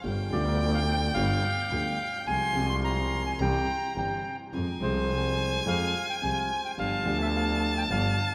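Passionate and dramatic, this rubato tango fragment sets a reedy, band-limited bandoneon melody, entering at 0.3 s, alongside a bowed violin second line that is warm with vibrato, a soft attack and expressive portamento. A vintage concert grand piano accompanies with intimate tone, deep bass, short sustain and audible action noise, while a focused, clear bowed double bass anchors the low end over a G7, Fm/C, C, Fm and G7 progression. A vast cathedral reverb bathes the whole in a long, echoing wash.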